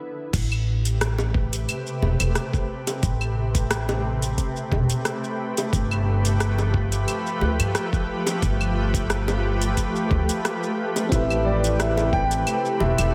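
Smooth and warm, this sunset chillout piece with a gentle swing opens on a brief touch of soft, round FM electric piano before the full groove arrives at 0.3 seconds. A shimmering, ethereal ambient pad with detuned unison, chorus and an octave-up granular sparkle sits up front, sustaining Am9 and G9 chords, while a woody, dark pizzicato upright bass with gut strings thumps close beside it. Underneath, a gritty, overdriven electronic kick drum pairs with an electronic R&B kit of metallic hi-hats, claves, rim clicks, shaker and crash cymbal, and tight, high-tuned bongos tap quietly in the background. At 11.1 seconds the electric piano returns with its diffuse delay, joined by an intimate, slightly boxy grand piano carrying a high melody with audible action noise and long sustain. Lush hall reverb soaks the dreamy mix in this short excerpt from a longer track.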